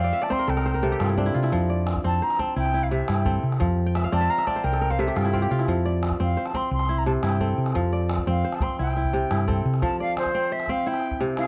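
A lilting 12/8 pulse at 116 beats per minute in dotted quarters, played straight, carries this joyful West African string and xylophone piece in F major, heard as a short cut from a longer performance. The fingerpicked kora sits up front with bright, crisp, ringing arpeggios across its range, adding fills at the opening and again around four seconds in. A dark, round hollow-body electric bass, also close and amped, anchors the low end until 9.8 s. A distant calabash gives a deep, acoustic thump set in a large-room space. An airy concert flute with vibrato and tongued phrasing floats its expressive melody from afar through tape echo, then steps into a brief solo at 9.8 s as the bass drops away. The dry, close 1970s-style studio sound keeps the small room's ambience intimate and warm, while the harmony moves back and forth between F and C.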